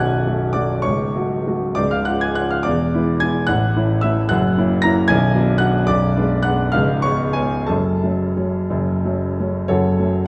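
A rubato 6/8 pulse, drifting between 57 and 79 BPM in dotted quarters, carries this stormy, brooding romantic character piece in F# minor, cut from a longer work, where a smooth, vintage-toned grand piano sits up front in a wet recital hall reverb, spanning B0 to A#6 as it moves from Bm7 through C#7 to settle on F#m at 7.7 seconds.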